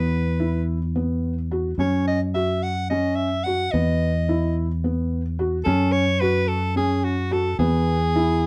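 A bright, forceful soprano saxophone with light vibrato carries the melody up front in this hypnotic, urgent excerpt of contemporary chamber music in 7/8, over soft felt-muted upright piano arpeggios with audible action noise and a round, punchy fingered electric bass, as the harmony alternates between E5 and F#5 chords in a dark production with moderate studio reverb.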